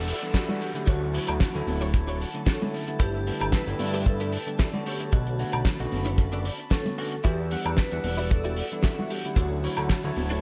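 Cosmic and sensual, this nu-disco excerpt rides a swung groove as a ringing vibraphone with fast motor vibrato carries the melody over a bell-like tine electric piano, bathed in lush chorus and digital delay, and a dark, bowed violin section with sampler grit sits softly in the background. A clean, picked guitar riff with ensemble chorus and a fat, saturated analog bass up front fill out the harmony, while a downlifter sweeps through the first 3.0 seconds. A tight, dry kick, a damped 70s kit with fat snare, hi-hat, woodblock and gated reverb, and soft-handed tube shaker and congas complete the bright 1980s-style digital production.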